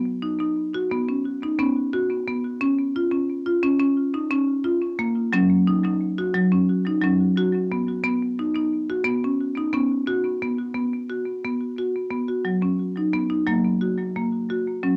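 A solo marimba played with hard mallets on padauk bars carries this gentle, calm piece of meditative world music. It sounds woody and bright, close-miked and up front, with a full, percussive attack that stays dry at the source while an analog delay trails behind it. The tempo is a steady 88 BPM in a straight 4/4, and the marimba stays between F#3 and F#4 in B lydian, tuned to A4 = 438 Hz. Its harmony moves through B, C#, F#5 and back to B, with a new section arriving at 10.8 seconds and settling on F# at 13.5 seconds. A small, reverberant room and the character of a home cassette recording frame the sound in this 15-second excerpt from a longer piece.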